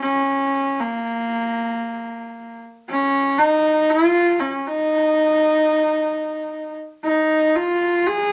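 A lone horsehead fiddle opens this brief fragment of Mongolian traditional music, its bowed horsehair strings sounding clear and husky as it unfolds in free time. The mood is vast and solemn, with a single player set up front in a studio ambience that lends a short, wet bloom to each phrase. The line moves between Bb3 and Ab4, coloured by light vibrato and gliding portamento, with an earthy, biting edge to the tone. Around 2.9 s the music moves into a new section, which carries on until the fragment ends at 8.3 s. Tuned slightly low, to A4 = 436 Hz, the fiddle has a grounded character suited to the music's vast, solemn feel.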